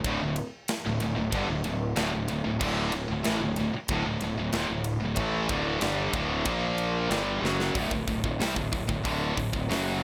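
Over a straight 4/4 pulse, this dark, heavy metal excerpt stacks three picked guitars on one riff under light reverb: an up-front high-gain distorted guitar, a scooped high-gain guitar and a very quiet, double-tracked fuzz guitar, all moving from a D power chord to Bb. Beneath them, a growly, punchy fingered electric bass with fuzz and overdrive holds the low end. A tight, polished acoustic kit with bright cymbals and an airy big-room sound plays a fill at 7.4 seconds, after which the fuzz guitar drops out and the others carry on into a new section.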